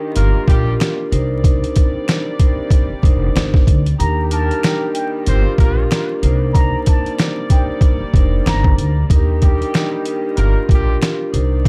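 A gritty, pitched-down sampler drum kit with a thumpy kick sits up front in this tough, dark boom-bap hip-hop excerpt at 94 BPM in C minor, joined by woody pizzicato upright bass, dry ringing vibraphone accompaniment, sustained bowed string chords with a reedy period tone, bright jazz trumpet-section stabs with delay, very quiet finger snaps, and a breathy plunger-muted trumpet melody with wah-wah and vibrato from 4.0 to 8.8 seconds, over a bed of vinyl crackle.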